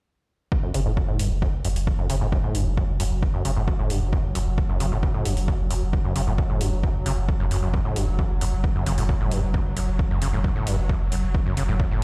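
A straight 4/4 pulse at 133 BPM drives this relentless stretch of peak-time techno in F# phrygian, cut from a longer piece, with a punchy, layered electronic kick sitting up front from 0.5 seconds and metallic electronic hi-hats joining at 0.7 seconds. An overdriven acid bass carries the riff between F#2 and C#3, squelchy and gritty with a resonant sawtooth edge, treated with tape echo and sidechain pumping while a filter sweep runs across it for the whole stretch. Beneath it, a saturated sub bass holds a deep, thick F#1, its triangle tone sustained under a low-pass filter and pumping against the kick. From 1.4 seconds a swarming drone on F#3 hovers in the background, a tense, detuned, granular sine texture that evolves through its own reverb and pumps along with the basses. The whole mix sounds as if played on a big sound system in a bare stone room, giving the driving groove a hard, reverberant space.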